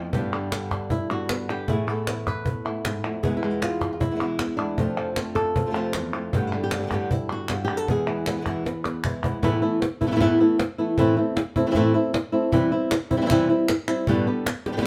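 A fingerpicked flamenco guitar leads this mournful, dramatic flamenco excerpt at 155 BPM, its melody up front and warm while a second fingerpicked guitar adds stabs until 9.4 s, moving through chords such as Gadd9, E and F before a turn to Esus4, Am and C. Underneath, a woody, compressed and saturated cajon played with soft hands and faint snares drives a straight 4/4, with a drum fill at 8.7 s, and crisp, close palmas hand claps drop out at 9.4 s and return at 12.9 s. A moderate studio reverb lends the acoustic parts a sense of room.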